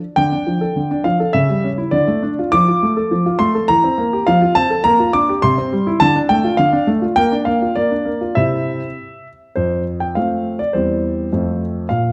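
Cheerful and elegant, this short cut from a longer classical-period piano sonatina moves at 103 BPM in 2/4 with a rubato feel, its solo grand piano sounding intimate and up front, with audible action noise, as it turns from D minor to F major at 4.8 seconds and reaches a new section at 9.6 seconds, all set in a wet recital hall reverb with a dark, warm production.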